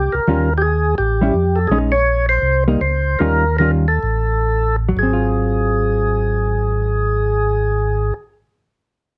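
A percussive tonewheel organ with key click and slow rotary speaker carries the melody up front in this greasy, swinging jazz excerpt in Ab mixolydian, while a round, mellow second tonewheel organ with chorus vibrato holds the bass and a dark, compressed hollow-body jazz guitar accompanies from 0.3 s, the 4/4 swing ranging from 117 to 168 BPM and slowing down between 1.7 and 5.0 s over chords such as Eb9, Bbm7 and Ab6, all in light reverb.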